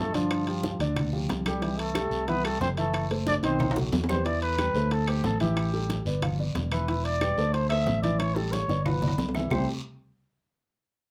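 Afro-Cuban jazz in a lively, sophisticated vein, this brief cut from a longer piece sets a growling, breathy trumpet melody up front over a dark, intimate baby grand piano with audible action noise and a punchy amped fingered electric bass, while a mellow duduk with vibrato and scooped notes adds a distant second line until 3.7 seconds, and congas, bongos, ringing metal-shell timbales, woody claves and a raspy saturated guiro fill out the percussion in a moderate club reverb, with drum fills at 3.4 and 8.2 seconds.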